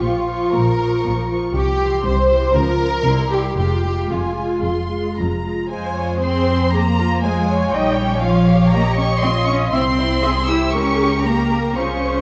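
A dark, reverberant scoring-stage sound surrounds this urgent, dramatic fragment of a quick classical-period movement for string orchestra, played in 4/4 with a rubato feel. High in the first violins, the melody sings with vibrato and a soft attack, while a second violin line sits up front with a focused, bowed tone. The viola section sounds lush and distant, colouring its accompaniment with expressive portamento. Beneath them, the cellos bring an intense tone with a smooth top, and a rich double bass section anchors the bass, placed up front. Over the harmony, which moves through Bbm, C and C7 before settling on Fm, the opening phrase is heard once and then restated from 5.7 s until the cut at 12.2 s.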